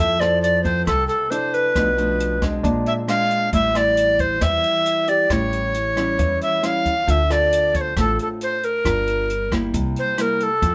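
A bright, reedy tenor recorder carries the melody up front from the first moment, its airy, tongued tone with a touch of chiff floating over fingerpicked nylon-string guitar with audible finger squeak and a woody pizzicato upright bass, in a sunny, breezy bossa nova in F major at 135 BPM. A compact cocktail kit with a punchy kick, hi-hat and rim click joins at 0.2 s, along with a warm concert grand piano sitting in the background until 7.1 s, as the harmony moves from Fmaj7 through Bb9, Am7 and A7 to Dm7, Gm7 and C7. The band sounds as if it is playing live together in one room, with moderate reverb, in this short cut from a longer piece.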